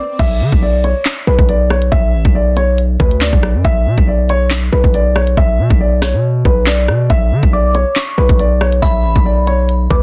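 This is a tense, menacing drill track in B minor at 139 BPM, moving with a half-time feel over a single B minor chord in a short cut from a longer piece. A dark, mellow concert grand piano carries the melody between B4 and E5 throughout, its boxy, intimate tone softened by a low-pass filter, with audible action noise and deep low end. After a brief stop at the start, the drill kit and a distorted 808-style bass arrive at 0.2 seconds and sit up front. The kit has a knocking kick, sharp snare, crisp hi-hats, handclaps, rim clicks and a crash, while the saturated 808 hits hard and then decays beneath them. The hi-hats drop out between 5.4 and 7.1 seconds. A glassy, crystalline FM synth bell adds a bright second line high above, sounding briefly at the very start and returning from 7.5 seconds, treated with chorus and delay, all within a dense, heavily limited modern master and a digital ambience.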